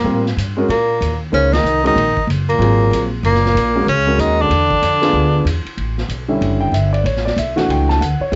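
Modal jazz in an intense, spiritual mood, this swinging fragment of a longer piece sets a bright, scooped tenor saxophone with a cassette-tape tint on the melody over a dark, breathy trombone whispering a distant second line until both stop at 5.5 seconds. A warm concert grand piano accompanies, a woody pizzicato upright bass holds the low end, and a gritty, saturated vintage drum kit with dark cymbals enters at 0.3 seconds. The band sits in light reverb on a lo-fi home cassette recording, with a band accent at 1.5 seconds.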